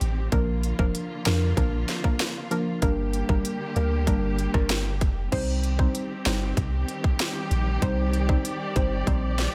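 This hypnotic, tough dancehall cut, taken from a longer piece, opens with an electronic island pop drum kit that sits overdriven and up front, with a tight kick, sharp snare, rim click, smooth hats and crash. Beneath it sit a deep, punchy sine sub bass and a distant, lush string section holding bowed chords with vibrato, portamento and a sidechain pump. At 0.3 seconds a soft, round, detuned pluck with chorus and a dark, wave-folded tone joins, while the harmony moves from Bb to Gm and lands on Cm at 5.3 seconds in a dry mix.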